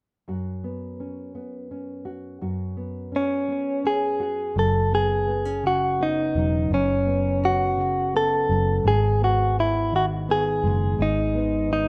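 A dark, woody nylon-string guitar opens this tender, heartfelt pop fragment in a slow, steady 6/8, its thumb-plucked, old-stringed tone settling on a suspended chord before a clean, compressed electric guitar enters up front at 3.2 seconds to carry the melody through spring reverb and delay. At 4.6 seconds a round, punchy, foam-muted vintage bass joins low beneath them as the piece moves into a new section, with the harmony shifting to a minor chord at 8.8 seconds, all captured in a rough, dry home-demo mix.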